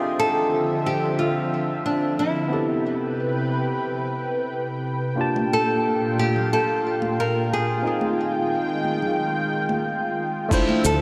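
Sunset chillout in D minor at 90 BPM, smooth and relaxed, where a fingerpicked nylon-string guitar carries the melody up front over a barky tine electric piano with tape echo and a lush, detuned unison pad drifting through chorus and phaser, all three bathed in shimmer reverb. Background congas join at 5.4 seconds as the chords move through Dm9, Am9, Gm9 and Fm9, and at 10.5 seconds a gritty, overdriven electronic kick arrives with dark, rolled-off brushed cabasa and crash cymbal, followed by a growly fingered electric bass on D2. The whole mix is dreamy and soaked in a cathedral-like reverb of 5.1 seconds.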